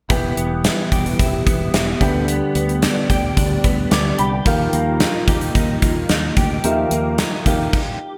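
Bright, polished 1980s-style digital production with a moderate plate reverb frames this uplifting, romantic pop excerpt in a straight 4/4. A gated 80s drum kit sits up front with bright cymbals, a tight kick and a medium-tuned snare in an airy stone-room sound, while a punchy fretless electric bass, a warm grand piano with subtle chorus, and a clean, compressed electric guitar riff treated with ensemble chorus and delay move over chords from Em to G/D and Ebadd9. A dark, shimmering pulse-width pad holds sustained chords in the background until a stop at 7.7 s, with the guitar ringing on to 8.2 s.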